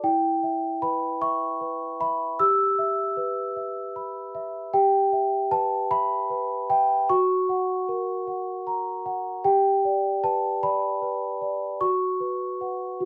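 A large celesta carries this brief classical lullaby entirely on its own, its bell-like tone sitting up front in a gentle 6/8 lilt. The sound is delicate and sweet, with soft felt hammers giving each note a mellow, ringing quality that stays smooth and full across a range from E4 to E6. The mood is innocent and dreamy, and the harmony drifts from E minor through F-sharp and G before settling on an F-sharp suspended chord near 11.8 seconds. Light reverb and a dark, warm production wrap the instrument in a soft glow. Lasting about 13 seconds, this fragment is cut from a longer piece and feels like a single hushed phrase from a bedtime song.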